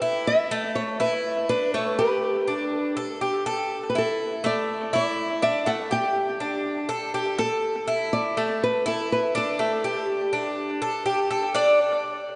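A bright, metallic Cuban tres opens this short Latin passage at 0.0 seconds, picking arpeggios on its double strings, some of them octave-doubled, across a range of A3 to D5. At 0.3 seconds a warm, fingerpicked nylon-string guitar joins with a small melody between A4 and G5, and the two acoustic instruments sit up front together, each trailed by analog delay. The tempo is a danceable 122 BPM in a straight 4/4. The mood is warm, with the harmony swaying between Dsus2, Gadd9 and Gsus2 before settling on D5 at 11.6 seconds. The dreamy mix is soaked in a lush hall reverb with a long 3.2-second tail, and its highest frequencies are rolled off above 10.4 kHz, giving this fragment of a longer piece a soft, hazy glow.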